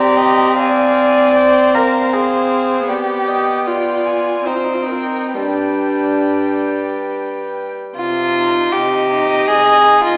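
Classical slow romantic movement for string quartet in C minor, a yearning, solemn passage cut from a longer piece, unfolding in a rubato 3/4 at 64-82 BPM, where a softly bowed, airy first violin carries the melody with vibrato above a rich, floating second violin line, a pure, up-front viola accompaniment and an intimate, warm cello bass with light vibrato, all four played sul tasto by single players and set in a wet recital hall reverb with a small-speaker sound.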